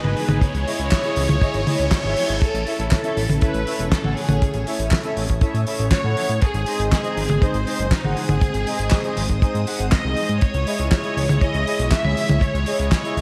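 A straight 4/4 italo disco groove at 120 BPM drives this danceable, nostalgic excerpt, cut from a longer piece, with a dry, tight kick sitting up front from 0.4 seconds alongside a damped 70s drum kit whose fat snare, dark cymbals, handclaps, hi-hat and toms carry studio and gated reverb. A fat, detuned sawtooth analog bass with a filter pluck anchors the low end, while analog synth brass adds bold, nasal stabs with vibrato and chorus. Behind them a lush string machine ensemble holds slow-attack chords, colored by phaser and ensemble chorus, and a distant studio violin section carries the bowed melody with portamento and digital delay. An electronic riser fills the first 2.4 seconds, with a reverse cymbal joining at 1.4 seconds, over a C#madd9 chord that arrives at 0.4 seconds; the harmony then moves through A and G# before returning to C#madd9. The bright 1980s-style digital production sits in a moderate plate reverb, with vinyl crackle adding a vintage patina.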